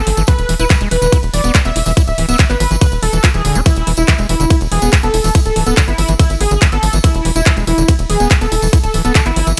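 Psychedelic trance with an alien, hypnotic mood, this short excerpt cut from a longer piece moves in a straight 4/4 pulse. A tight electronic kick sits up front, layered with a produced garage kit of handclaps, hi-hat and ride cymbal, while a jingly acoustic tambourine stays close and dry in the background. Underneath, a dark, saturated sequencer bass drives forward with a fast filter pluck and evolving sawtooth and square tones, also placed up front. Above it, an overdriven acid bass riff squelches with gritty, resonant filter sweeps, its distorted tone treated with cassette tape colour, dub echo and sidechain pumping. The melody comes from a thick, bold unison lead of detuned sawtooth and triangle layers, sustained and bright with vibrato, run through phaser, tape echo and sidechain pumping. The mix is dry, with little reverb, keeping the whole groove close and insistent across its 9.6 seconds.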